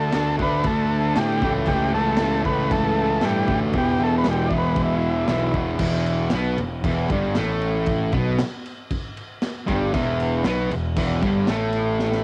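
A buzzy, overdriven combo organ with heavy vibrato carries the melody over a bright, double-tracked fuzz guitar riff and a punchy, overdriven picked bass, joined at once by a crunchy breakbeat kit with dark cymbals, a high-tuned snare and a rolled-off top, in this gritty, swaggering garage rock excerpt at 116 BPM in E minor, where the organ drops out at 5.5 seconds as the chords move from D5 and A/C# through E5 to Em, leaving guitar, bass and drums to drive on to a drum fill at 12.0 seconds, all in a small room with cassette-tape grain on the organ, guitar and drums.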